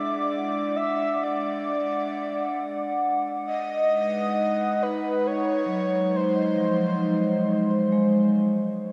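Luminous and weightless, this short ambient passage drifts at 66 BPM in 3/4 with a straight feel, moving from D through Cb6 to Ab7. A breathy, flute-like synth lead carries the melody up front from 0.0 to 8.0 s with vibrato, chorus and a diffuse delay, over a warbling, nostalgic tape-like pad whose dark, detuned chords sit close. Ringing vibraphone arpeggios with slow motor vibrato and a calm organ-like drone in the background fill out a vast cathedral reverb with a lo-fi cassette character, as the piece fades out on the synth drone.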